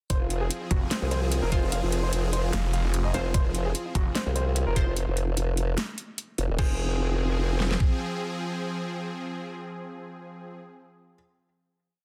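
Heavy wobble dubstep in F minor at 148 BPM with a swung half-time feel, this chaotic, aggressive piece opens on a drop where a knocking kick and huge snare, metallic hats and crash pound beneath an up-front formant-sweep wobble bass with chorus and overdrive, a growling, detuned saw bass snarls in from 0.7 to 4.0 seconds, a lush, airy supersaw pad pumps with sidechain, a bold orchestra-hit-like synth stab echoes sparsely in the background, and an intimate grand piano with audible action noise and tape echo repeats a riff over a pedal note, the drums dropping out by 7.9 seconds as the final chord rings on to 11.1 seconds in a dense, heavily limited, dry master.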